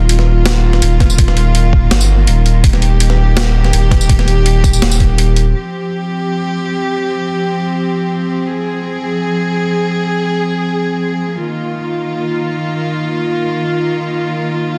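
Half-time drum and bass with a heavy, dark mood, cut from a longer piece, opening on a drop where a deep, saturated sub bass and a compressed, gritty sampler-style kit with a high-tuned snare, hi-hat and tambourine play until about 5.5 seconds, joined by a thumpy electronic kick at around 1 second. Over this, a close, intimate chamber cello section holds soft-attack bowed chords with light vibrato, roughened by vintage 12-bit sampler grit and sidechain pumping. The cellos then carry on alone through the second section until 14.8 seconds, all within a dry, dense, heavily limited modern master.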